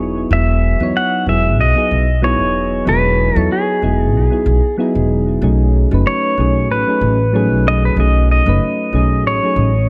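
A light reverb gives this sunny, smooth chillout clip an airy glow, with a gentle swung lilt as it moves from Emaj7 to B13 at 5.4 seconds. Up front, a woody, warm upright bass is plucked on steel strings beneath round, mellow electric-piano-like synth keys that carry a soft chorus shimmer. From 0.3 seconds, a bright, clean pedal steel guitar sings the melody with fingerpicks, slide and volume swells, its compressed tone trailed by delay.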